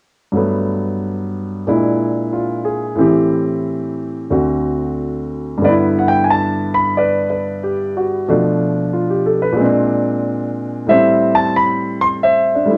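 Swung eighths in a loose, rubato 4/4 at about 91 BPM carry this playful, relaxed solo jazz piano fragment in G major, cut from a longer piece, where a smooth, vintage-toned grand piano sits up front from 0.3 s to 12.8 s, ranging from D2 to C6 through colorful harmonies such as Gmaj9, Bb7#11 and Bm7b5, all heard through light reverb and the worn, warbling pitch drift of old cassette tape.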